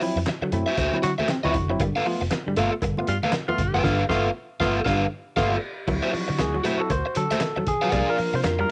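This home cassette recording has a tight, moderate booth ambience and a cassette tape character, and it is a short cut from a longer funk piece with a strutting mood and a swung sixteenth-note feel. A cloth-damped kit with a fat snare, tight kick, dark cymbals, hi-hat, crash and handclaps thuds along under a round, punchy muted fingered bass. A crunchy overdriven guitar sits up front with picked accompaniment, while a dark, slightly broken-up guitar plays a compressed riff in the background and a barky tine electric piano jabs out stabs over D9 and G9 chords. A breathy tenor saxophone enters at 1.0 seconds with a smooth, jazz-styled second line, light vibrato and scooped notes, bathed in plate reverb. Soft-handed congas and a metallic, dry cowbell add faint percussion, and the band hits accents from 3.8 seconds. At 5.9 seconds the bright electric piano takes a solo, moving from D9 to C9sus4.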